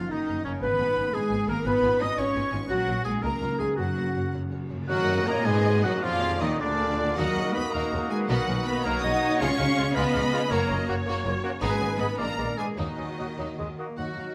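Dramatic and urgent, this fast romantic orchestral movement surges forward in a rubato 6/8 at roughly 98-117 BPM, opening in F# major before darkening into Eb minor at 4.9 s. A lush, bowed violin section carries the melody with smooth vibrato, while a second violin line, an expressive, distant viola section and an expressive cello section fill the background. A double bass section anchors the bass with a smooth, even tone. Around them, an airy flute section with crisp attacks, a solo oboe, a clear, vintage-tinged clarinet and a roomy French horn section holding sustained chords weave the inner lines, and a thumb-plucked concert harp rings out arpeggios throughout. A very quiet cymbal swell and tam-tam shimmer in from 2.7 s, and at 4.9 s the full ensemble lands an accent as a solo bassoon joins the accompaniment and a soft, mellow trumpet adds distant stabs. The close, detailed recording sits in a moderate scoring-stage reverb, and the passage is cut from a longer piece.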